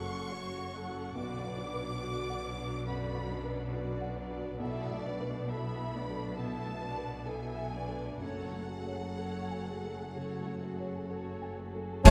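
Sorrowful, longing film-score strings open the passage in a slow rubato 4/4, with a lush, vibrato-rich violin melody high above a second violin line, a soft, intimate felt-muted upright piano with audible action noise, smooth background violas, and focused cello and double bass sections beneath, all in a moderate hall reverb, until hard-mallet timpani enter at 12.0 seconds and, at 12.1 seconds, an up-front crash of bright cymbals and bass drum arrives, joined by an airy flute, a clear clarinet, a mellow cor anglais and a barely audible dark horn section.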